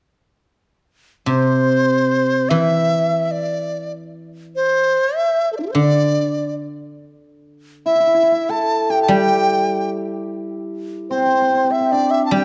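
A bright, reedy large dizi with an airy buzzing membrane, vibrato and a soft attack carries a graceful, festive melody in G zhi mode over a mellow, silvery guzheng from 1.3 s, freely paced around 74 BPM in 2/4, with a shimmering hammered dulcimer adding a ringing second line from 7.9 s, all set in a moderate stage reverb within a dark production in this fragment of a longer Chinese traditional piece.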